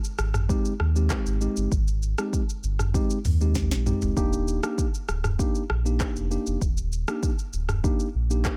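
Afrobeats with a joyful, sunny mood, this short excerpt sets an electronic afro-pop drum kit of deep kick, sharp snare, metallic hats, handclaps, rim clicks, shaker and toms against a deep, full sub bass with octave that enters at 0.2 seconds with a fast attack and sustained, sine-like tone. A mellow tine electric piano joins at 0.5 seconds, clean and direct, voicing Abmaj7 before the harmony moves to Ebmaj7 at 4.2 seconds, just after a drum fill beginning at 3.6 seconds. All three parts sit up front in a dry mix with a faint mains hum beneath.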